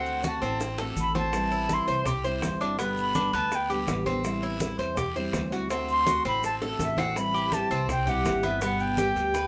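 An airy silver concert flute with vibrato and a soft attack carries the melody up front from the first moment, over thumb-plucked classical nylon-string guitar, a metallic, double-strung tres picking arpeggios, and a woody, thumpy pizzicato upright bass. This is a danceable Cuban son and guajira cut at a brisk 165 BPM, moving through D7, Am7 and G. The flute pauses at 3.7 seconds and returns at 5.9, while low-tuned congas struck with hard hands, tight high-tuned bongos, a raspy guiro and grainy maracas keep a percussive bed in the background of a moderately reverberant studio.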